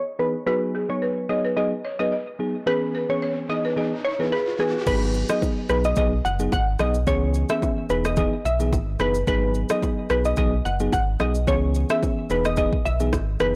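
Hypnotic and mellow, this afrobeats excerpt opens with a glassy, crystalline wavetable pluck melody, a bell-like FM electric piano and a woody, buzzing balafon riff under a filter sweep and an electronic riser, until at 4.9 seconds a deep sub bass with octave, a tape-warm afro-pop drum kit with deep kick, rim click, shaker, crash and soft-clipped snare, and very quiet close congas and bongos arrive over seventh- and sixth-chord changes, all in a blown-out, overdriven recording with light reverb.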